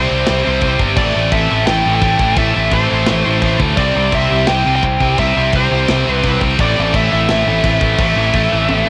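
A relentless, aggressive heavy metal passage at 171 BPM opens with a stack of bright, picked high-gain riff guitars, led by an up-front heavy guitar and shadowed by two very quiet distorted ones, over a growling, punchy overdriven bass and a warbling, detuned analog pad sustaining chords in the background. A high-gain lead guitar carries the melody between C5 and G5, while a tight metal drum kit enters at 0.3 seconds in a half-time feel and rolls into a fill at 8.7 seconds. The harmony shifts between C and A minor, and the whole home cassette recording has light reverb and a studio-room ambience.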